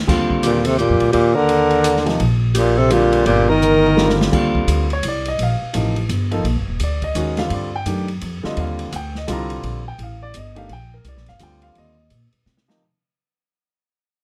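A breathy tenor saxophone carries the melody from 0.4 to 4.2 seconds, its whispered, mellow tone full of vibrato and scooped notes, sitting up front and intimate. A clear alto saxophone plays a second line over the same span, close-miked with light vibrato. This modal jazz piece in Eb lydian moves at a brisk 170 BPM in 3/4 with a swing feel, resting on an Ebmaj9 chord and carrying a spiritual, searching mood. Underneath, a woody, growly upright bass plays pizzicato on steel strings. A grand piano with long sustain and audible action noise supplies the accompaniment, while an acoustic drum kit with dark cymbals, a boomy kick and a rolled-off top keeps time in a small room. After a drum fill, the music fades out from 4.3 seconds onward under light reverb, and the clip itself is cut from a longer piece.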